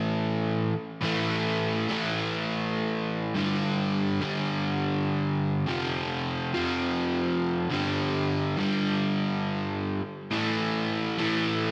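Energetic and anthemic, this rock excerpt runs in a straight 4/4 feel and features a single electric guitar playing alone for its full 11.7 seconds. The guitar is crunchy and overdriven, picked and double-tracked, sitting up front with a warm, gritty bite. Its power chords move from A5 to G5 and F5, return to G5, and arrive back on A5 at 10.3 seconds, staying in a low register that spans F2 to A3. A lush hall reverb with a 2.1-second decay bathes the sound, giving it a big arena character. Cut from a longer piece, the passage carries a stadium-sized swagger.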